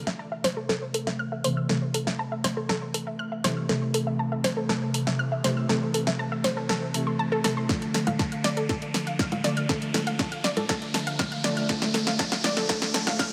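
Driving and cinematic, this melodic techno build-up cut from a longer piece sets round, detuned analog pluck arpeggios and bold, wave-folded analog synth brass stabs, both under filter sweeps with chorus, tape echo and sidechain pumping, over a background riser and an up-front house kit fill of congas, bright hats and punchy snare, with a layered electronic kick entering at 7.7 s as the chord shifts, all bathed in a lush hall reverb.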